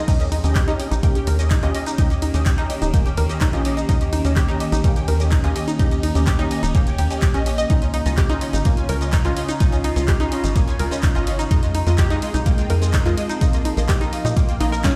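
Cut from a longer piece and heard through a big sound system in a bare stone room, this mostly dry progressive house passage at 126 BPM in Eb mixolydian feels hopeful and euphoric, with every pitched part pumping against an overdriven, knocking electronic kick that sits up front. A tight, nasal sequencer bass drives beneath a deep house kit of punchy snare, handclaps, hi-hat, ride, shaker and crash, while a round analog pluck arpeggiates with chorus and delay and a lush, detuned unison pluck adds stabs. An evolving, bright wavetable pad morphs through phaser and its own reverb, holding sustained chords that move from Eb7 to Dbadd9, Fm7 and Bbsus4.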